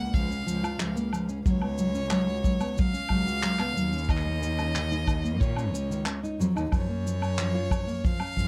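Delicate and playful, this folktronica excerpt moves at 91 BPM in a straight 4/4 feel, centered on F# major and cut from a longer piece. A rich, focused violin carries the melody from the start, bowed by one player with vibrato and touched by delay, while a nylon-string guitar with fresh strings lays down thumb-plucked classical arpeggios. Beneath them, a dark cello holds the bass up front and close, its expressive bowing marked by vibrato, portamento and a hint of tube saturation. From 0.1 seconds a punchy acoustic kick drum sits prominently in the mix, together with a vintage brush drum kit whose cabasa, handclaps, hi-hat and woodblock sound smooth with a rolled-off top. The harmony drifts from a rootless F#maj7 through C#7sus4 and D#7 before settling back on F#maj7, all held in a moderate small-room ambience.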